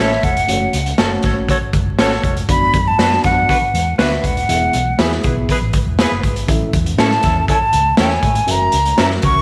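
Uplifting and danceable, this short excerpt of 1960s-style soul puts a breathy, vibrato-laden jazz flute up front on the melody over a clear saxophone section's second line, dark clean electric guitar stabs in spring reverb, a round, foam-muted fingered bass, a gritty, saturated garage drum kit with punchy kick, a mellow tine electric piano entering at 0.5 seconds, and very quiet bright congas, all set in echo-chamber reverb with vinyl crackle.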